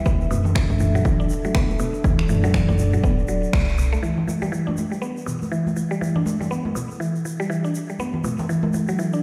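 Heard as if played on a big sound system in a bare stone room with light reverb, this driving, spiritual afro house excerpt at 121 BPM swings on 16ths. A woody, up-front FM mallet pluck arpeggiates with chorus and digital delay over a dark, detuned analog pad, congas with soft hands ring close, and a grainy egg shaker ticks. Meanwhile a round sine sub bass and a punchy, overdriven kick drive the opening, joined at 0.6 s by a deep house kit with finger snaps and filtered toms, before a band accent at 3.5 s, the kick and kit stopping at 3.6 s, and the shift from D to E5 at 4.0 s.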